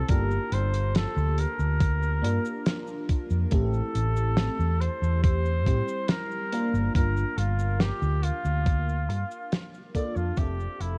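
Cassette-tape haze and light studio reverb wrap this woozy, melancholic vaporwave fragment in G dorian at 70 BPM, where a clear, vintage flugelhorn with vibrato carries the melody through tape echo over a lush, dreamy FM electric piano and soft pad with phaser and analog chorus, a dark, round hollow-body electric bass, a dry, damped 70s kit of cabasa, hi-hat and fat snare, and a thumpy electronic kick, moving through Gm7, Am7 and Fmaj9 before fading out from 8.1 seconds.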